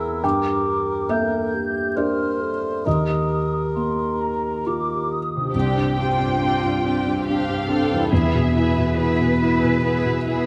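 A moderate concert hall reverb surrounds the recording, with a felt-muted upright piano up front, its thick-felt tone intimate and vintage, and its action noise audible throughout. This is a tender, uplifting cinematic fragment at 69 BPM in 3/4, played with rubato over Gm and Ebadd9 chords, later moving to Csus2 and E. In the opening phrase, a dark, distant clarinet and a close-miked, mellow cor anglais with light vibrato carry second lines beneath an airy, hollow small flute group with a crisp attack. At 5.5 seconds the woodwinds give way to con sordino strings: violin sections take the melody and a second line, violas sit lush in the background, and cellos hold the bass, all of them veiled and played with vibrato. A thumb-plucked concert harp adds ringing arpeggios from behind the strings.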